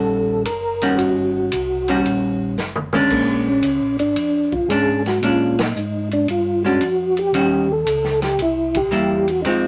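Soul jazz organ trio at 113 BPM with a greasy, bluesy swing, where a soft, flute-like percussive organ carries the melody through slow rotary speaker and chorus vibrato beside an up-front, dark hollow-body electric guitar comping over Eb7#9 and Bb7#9, while a round organ bass line sits underneath and an acoustic drum kit with a punchy kick enters at 0.5 s, plays a fill from 2.6 to 3.1 s and joins band accents at 5.5 and 8.7 s in a small room.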